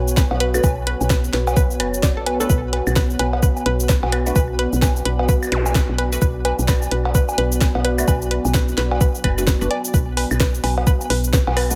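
Lightly reverberant and hypnotic, this quirky minimal techno excerpt at 129 BPM in B minor swings its sixteenths over a soft, tape-touched electronic kick up front, a garage kit of cabasa, hi-hat and cracking snare, analog-sounding woodblock, cowbell and claves, a round, woody FM bass pumping with the sidechain, a moody, full-bodied pad with chorus, a bouncy, hollow square-wave pluck riff with chorus and digital delay, a muted, nasal dub chord stab with phaser set in the background, and a brief electronic zap at 5.5 seconds.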